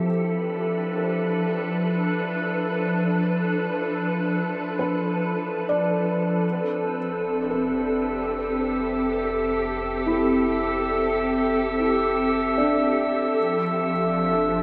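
Bathed in a huge, wet reverb with a long tail, this serene ambient fragment, cut from a longer piece, floats on a glassy FM pad whose slow-attack sustained chords sit up front with ensemble chorus and their own reverb. Behind it, a soft, felt-muted upright piano traces intimate arpeggios through a diffuse delay, while a pure glass harmonica adds smooth texture as it fades out over the first 6.4 seconds. From 6.4 seconds, a round, deep analog bass fades in on a low F, dark beneath the calm haze.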